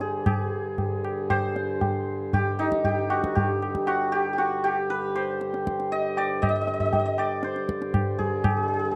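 A dry, close 1970s-style studio recording with little reverb and some lossy compression artefacts frames this devotional, meditative fragment of Hindustani classical music, cut from a longer piece. Up front, a shimmering, hammered santur carries the melody over a reedy, breathing pedal harmonium drone, while low-tuned, ringing tabla supplies the percussion until about 8.6 seconds. The pulse speeds up across the nine seconds, giving the calm mood a sense of gathering momentum.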